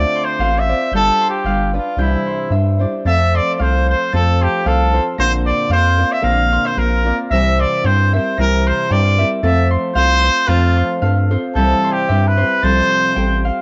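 A bright, distant trumpet sings a classical-style solo melody up front from the very start, joined at once by fingerpicked nylon-string guitar, ringing concert harp arpeggios and a deep, round, nasal bass with transformer saturation, in this festive, romantic mariachi folk excerpt with a loose swing and rubato feel, where the tape-worn trumpet, guitar and harp share a small room under moderate spring reverb on a dulled home cassette recording.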